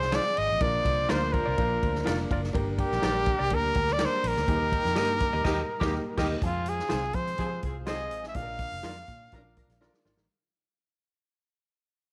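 A clear, close-miked trumpet leads this cut from a longer piece of driving, passionate 1960s-style soul, singing the melody up front with pop-style vibrato, scooped notes and a touch of tape echo. Beneath it, a swinging big-band drum kit with a punchy kick and medium-tuned snare drives a straight 4/4 groove, while a dark, round, foam-muted electric bass anchors the low end. A woody upright piano and a hollow-body electric guitar playing clean, compressed stabs sit in the background. A very quiet mellow horn section adds a loose, jazz-style second line, and a tonewheel organ holds smooth chords through a slow rotary speaker with audible key click. The band hits an accent at 5.5 seconds before the music begins fading out at 6.4 seconds, and a drum fill arrives at 9.8 seconds, all in a light studio reverb.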